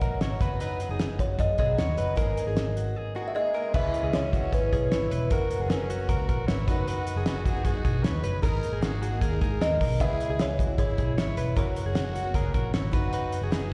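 This jangly indie pop excerpt moves in a straight 4/4 pulse set by a cloth-damped, thuddy drum kit with a fat snare, tight kick and dark cymbals, sitting up front beside a round, foam-muted vintage electric bass. A bright, shimmering twelve-string acoustic guitar with slapback echo picks out its octave-doubled accompaniment, while a direct-recorded clean electric guitar plays compressed arpeggios coloured by harmonic tremolo and the same short echo. A woody, mellow kalimba carries the melody from 1.2 seconds, pauses, and returns near 9.6 seconds with soft, ringing plucks. At 3.7 seconds a raspy, growling trumpet with light vibrato adds a gritty second line, and a worn, slightly out-of-tune reed electric piano murmurs very quietly underneath. Heard through a venue's PA with recital hall reverb, the cycling chords leave a restless, bittersweet mood.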